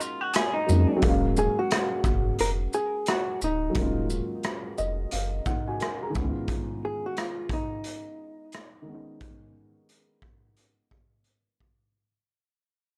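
A dark, clean hollow-body jazz guitar carries the melody from 1.4 s, its compressed, fingered tone set up front and trailed by tape echo. This melancholic, nostalgic lo-fi hip hop excerpt moves at 88 BPM in 4/4 with a swung sixteenth feel, in Eb minor and tuned to A4 = 441 Hz. It opens on a brief break in which an electric guitar through a small old amp, slightly broken-up and lo-fi, plays a short second line with its own tape echo. Meanwhile a woody, slightly detuned upright piano with audible action noise and a cassette-tape character holds the accompaniment and adds a fill partway through. A gritty, saturated garage drum kit with a punchy kick, hi-hat, rim click and shaker sits up front in a pumping small room, and a round, sine-like sub bass plays from 0.7 s to 6.3 s. The harmony moves from Ebm11 to Db9 under light reverb, and the music fades out across the rest of the clip.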